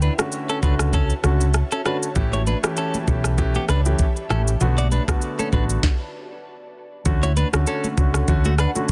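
Joyful and romantic, this short afrobeats cut in D major moves at 98 BPM with a lightly swung 16th feel, built on an up-front electronic kit of knocking kick, sharp softly clipped snare, rim click and shaker, with a round, punchy, dark hollow-body bass. A twangy, clean, direct-recorded electric guitar riff with tape echo and a short-sustain grand piano ride over a mellow, detuned pad that drifts in the background with ensemble chorus and reverb. High-tuned congas with hard hands and thin skins join at 2.2 seconds, and a stop at 5.8 seconds leads back to Dmaj7 in a dense, heavily limited modern mix.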